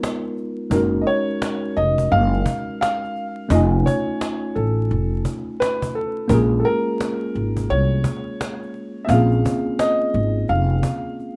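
Hazy and nostalgic, this short lo-fi hip hop excerpt in Bb minor moves at 86 BPM with a swung 4/4 feel, carried by a rough home-demo mix with light reverb and vinyl crackle. A dark, smooth, vintage upright piano sings the melody over a worn, slightly out-of-tune tine electric piano, while a snappy cajon with snares rings in a live room from the start. A woody pizzicato upright bass enters at 0.7 seconds, front and center, beneath chords drifting from Db13 through Gb6 and F7alt to Bbm9, and a drum fill arrives at 11.2 seconds.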